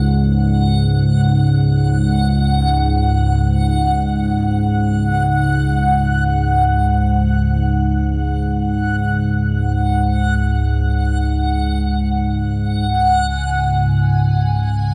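Unfolding in free time, this brief, ominous dark ambient drone cut from a longer piece pairs a mellow, detuned analog drone, sawtooth and pulse-width-modulated with chorus and held up front in the low register, against a bright, reversed, granular swelling texture high above with shimmer reverb, both sustained across the full 14.9 seconds over a C#sus4 chord in a cavernous, dreamy mix soaked in plate reverb.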